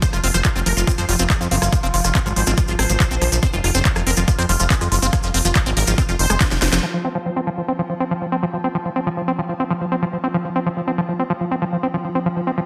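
A straight 4/4 pulse at 141 BPM drives this alien, psychedelic trance passage in F minor, where a punchy, overdriven electronic kick, a techno drum kit with cracking snare, smooth hats, handclaps and rim click, a grainy tube shaker and a fat, saturated analog bass carry the first half alongside a phased, detuned supersaw stab melody with dub echo. Underneath it all from the start, the squelchy, resonant liquid acid bass riff with its delay and the bright, morphing wavetable pad in the background both pump under sidechain. After a drum fill and band accent around 6.7 seconds, these two carry the second half on their own in a dense, heavily limited mix.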